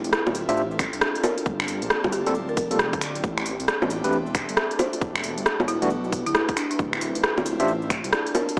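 Moody and skippy, this two-step UK garage excerpt has crisp, tape-warmed garage drums up front with bongos, cabasa, finger snaps, hi-hat and rim clicks, a tight electronic kick entering at 0.8 seconds, and a rumbling, detuned saw bass, while a barky, overdriven tine electric piano with fast tremolo and tape echo stabs through Dm11, Gm11, Am11 and Em11 chords, a woody folk marimba plays the melody in the background from 1.2 seconds, and a breathy pad and a deep, warbling ambient pad both pump beneath it all with chorus, the whole carrying a gritty, small-speaker hardware sound.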